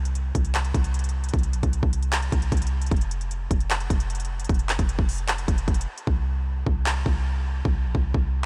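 Trap-style hip hop with a half-time feel, melancholic and menacing in mood, cut from a longer piece and heard in a dry space. A deep, boomy 808-style bass with a dark sine tone, a noise layer and a fast attack that decays runs throughout, under an up-front electronic trap kit of hard-clipped kick, crisp hi-hats and handclaps roughened by vintage 12-bit sampler grit. At 6.1 seconds the hi-hats drop out, leaving kick, claps and bass for the final stretch.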